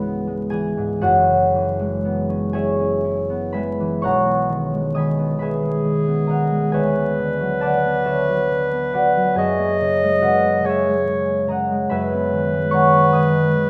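A dark, warm production with a faint vinyl crackle sits under a moderate stage reverb, giving this short cut from a longer impressionist piece for clarinet and harp a dreamy, luminous glow. The concert harp opens alone at 0.0 seconds, its bright, ringing, thumb-plucked tone spanning a deep range and drifting through C#m7 and F#9sus4 in a rubato 6/8. The clarinet enters at 5.4 seconds with a smooth top and a warm classical sound, carrying a solo melody in a narrow middle register up front. Beneath it, the harp colours the second section with lush B69, D69 and F#9 harmonies, remaining the more prominent of the two parts. The passage breaks off at 13.7 seconds, suspended mid-thought.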